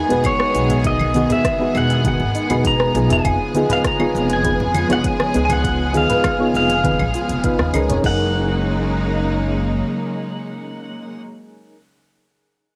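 Sunset chillout in F# major at 100 BPM, smooth and blissful, moving over Emaj7 and C#7/E# before settling on F#69 at 8.0 seconds in this section of a longer piece. A bright, twangy pedal steel guitar carries the melody with slide and volume swells through analog delay, while a clear symphonic string section sustains bowed chords with light vibrato beneath it. Soft electric-piano-like synth keys add a dark, gentle accompaniment shimmering with chorus and tremolo, and a detuned, wave-folded pluck sits in the background with arpeggios through ensemble chorus and delay until 8.3 seconds. A woody, pizzicato upright bass with tube saturation anchors the low end, joined by a punchy electronic kick, a deep house kit of smooth hats, cabasa, claves, rim click and crash, both with a cassette-tape character, and low-tuned congas played with soft hands. The drums and congas drop away around 8.2 seconds, and the bass follows at 9.8 seconds, leaving the strings, steel and keys to ring on in a small, wet booth ambience with the softened grain of a home cassette recording.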